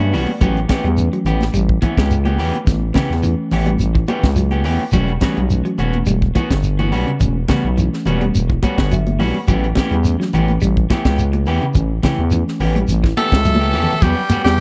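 A dry, close 1970s-style studio sound frames this defiant, intense afrobeat excerpt at 106 BPM in 4/4, where a growling FM bass and a tight funk kit with a high-tuned snare sit up front, and grainy shekere and damped, thick-skinned congas fill out the percussion. A twangy, slightly broken-up guitar plays stabs through spring reverb over clean semi-hollow guitar arpeggios and a mellow tine electric piano that adds short fills, all moving between A9 and Em69. At 13.2 seconds, a raspy tenor saxophone takes the melody up front, with bright alto and punchy baritone saxophones adding second lines behind it as a drum fill closes the passage.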